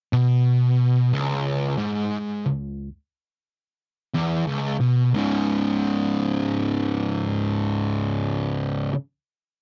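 A lone fuzz guitar opens this short metal fragment on a C#5 power chord, its distorted, picked tone warm and up front in a dry, close room that recalls a 1970s studio. The mood is ominous and brooding, set at a slow 60 BPM in 4/4 with a swung eighth-note feel. Double-tracked, the guitar stays low in its register, moving between C#2 and C#3. A light reverb adds only a faint halo around the otherwise intimate sound. The passage shifts into a second section at 5.1 seconds, and the guitar plays on until 8.9 seconds before this cut from a longer piece ends.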